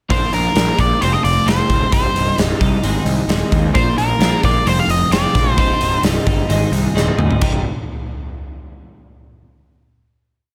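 A dark, cathartic quiet-loud alternative rock piece in C minor at 131 BPM opens with everything at once: an up-front, distorted octave-fuzz lead guitar states hook phrases until 6.0 seconds over clean, twangy twelve-string electric guitar arpeggios soaked in lush chorus, a driving overdriven fuzz bass, and a huge arena drum kit with a punchy kick, bright cymbals and a roomy hall sound, all cycling through Bb, F, Cm and Ab before a drum fill at 7.0 seconds leads into a final C5 chord at 7.4 seconds under light reverb.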